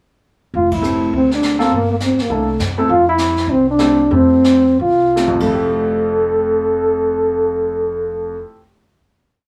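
A mellow, up-front trombone carries a smooth, lightly vibrato melody of song-like phrases over syncopated rootless piano comping, a woody, thumpy upright bass in two and brushed drums with dark cymbals in this short, relaxed small-group swing piece in F major, which opens on a band accent at 0.7 seconds, slows from 2.9 seconds and closes on a final hit at 5.6 seconds in a small live room.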